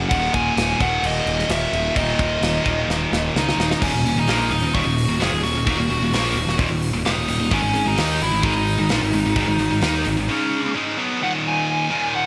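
A big arena sound with a lush hall reverb frames this aggressive, heavy metal passage in Eb minor at 130 BPM, cut from a longer piece. A double-tracked, high-gain rhythm guitar drives the riff up front, with a growly fuzz-toned picked bass beneath it and a tight acoustic drum kit with bright cymbals that plays a fill from 2.9 to 3.8 seconds. Over this, a nasal lead guitar with a parked wah carries the melody through slapback echo and delay, continuing with the riff guitar after the bass and drums stop at about 10.3 seconds.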